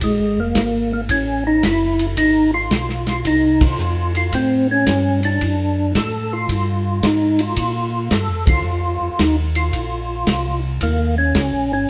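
A swung 4/4 groove from an up-front soul drum kit with dark cymbals and a tight kick drives this bluesy soul jazz organ trio excerpt, where a fat, percussive tonewheel organ with key click, chorus vibrato and slow rotary speaker carries the melody over a round, mellow organ bass line, the band hitting accents at 3.5 and 8.4 seconds inside a stone room's moderate reverb.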